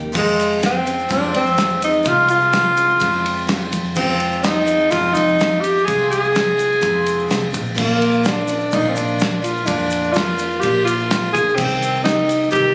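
A straight 4/4 groove at 126 BPM drives this dusty, wistful slice of folk rock and heartland rock in F dorian, with a damped 70s drum kit of fat snare, tight kick and dark crash and ride cymbals, a round hollow-body electric bass, and a bright picked steel-string acoustic guitar carrying the accompaniment through Fm, Bb and Cm. Up front, a breathy tenor saxophone sings the melody with a soft, whispered, intimate tone, while a grainy tube shaker sits in the background. Caught on a phone in the room, the sound carries a club reverb that gives this excerpt a casual, live-in-the-space feel.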